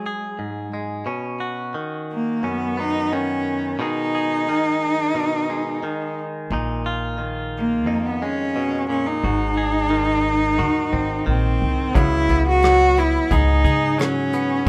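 This intimate, reflective acoustic folk-pop ballad opens on a bowed cello carrying the melody, its single player placed up front with a rich, nasal, focused tone and vibrato. Beneath it, a clean electric guitar recorded direct supplies picked accompaniment, bright and twangy with a compressed edge, moving through suspended and seventh chords in a straight, unhurried 4/4. At 6.5 seconds a pizzicato upright bass joins, its gut strings giving a woody, thumpy low end. A soft brush drum kit enters at 12.0 seconds with hi-hat, rim click and a punchy kick, its dark, smooth sound rolled off at the top. Light reverb gives the ensemble a gentle sense of space, and the passage is cut from a longer piece.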